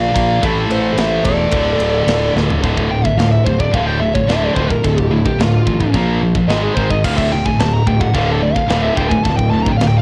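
A straight, driving 4/4 pulse anchors this relentless, aggressive heavy metal excerpt, cut from a longer piece and captured as a home recording on cassette with light reverb. Two high-gain rhythm guitars, one of them scooped, grind out a low riff in the background with a bright, tape-tinged bite, while a fuzzed, growly fingered bass sits up front beneath them. A tight acoustic drum kit with bright cymbals, a medium-tuned snare and a tight kick drives the band, working across china, crash and ride cymbals and toms, and a fill at 2.4 seconds sets up the lead electric guitar solo that begins at 2.6 seconds. The dark, high-gain lead guitar carries the melody throughout, joined briefly at the start by a smooth overdriven second line coloured by cassette tape and analog delay that drops out at 2.3 seconds. Underneath it all, a dark studio string section holds soft, floating bowed chords that are barely audible, as the harmony moves from A minor to D minor and later through Bb and G# power chords before settling back on D minor.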